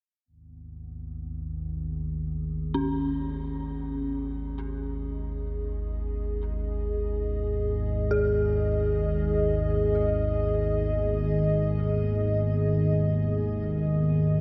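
Dark ambient drone in free time and G# minor, desolate and unsettling, where a resonant, pulse-width-modulated analog drone enters at 0.5 seconds under a filter sweep, a deep, wave-folded analog pad holds sustained chords from 1.0 seconds with shimmer reverb, and an eerie, inharmonic FM synth bell adds decaying arpeggios with tape echo from 2.7 seconds, all sitting in a huge, wet reverb with a 7.6-second tail in this excerpt from a longer piece.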